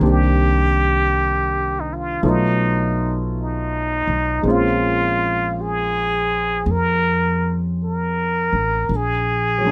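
Closely miked and nearly dry, this detailed recording captures a short, tender late-night jazz ballad fragment with a lilting swing, cut from a longer piece. A breathy, plunger-muted trumpet carries the melody up front with a bright wah-wah edge and light vibrato, while a concert grand piano, intimate and natural with audible action noise, accompanies through chords moving from Cm9 to Cb7#11 and Bbm7. Underneath, a woody, dark pizzicato upright bass on steel strings sits forward in the mix for the full 9.7 seconds.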